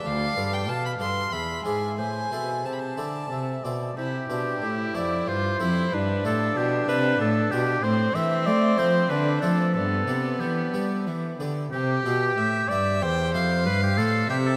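Classical baroque-style sonata movement in a serene, flowing 3/4 with rubato, cut from a longer piece, where a clear, up-front solo oboe sings the melody with vibrato over a rich bowed violin second line and a focused bowed cello bass, while a dry, brilliant, close-miked harpsichord plucks the continuo accompaniment, all set in the wet reverb of a vast, echoing cathedral as the harmony settles from minor into major at 4.0 seconds.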